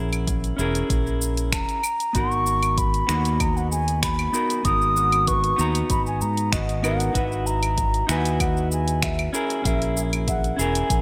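A bright, 1980s-style digital production with light reverb frames this smooth, warm sunset chillout excerpt in G# minor at 96 BPM, moving through A#m7b5, G#m9 and Emaj9#11/G#. A clean, picked electric guitar with delay and an up-front fingered electric bass open together, joined by a layered deep house kit of cabasa, claves, finger snaps and hi-hat through gated reverb, plus a punchy electronic kick. A pure, tongued baroque flute with vibrato and delay carries the melody from 1.5 seconds, while a thumb-plucked concert harp rings softly in the background with delayed arpeggios from 2.1 seconds.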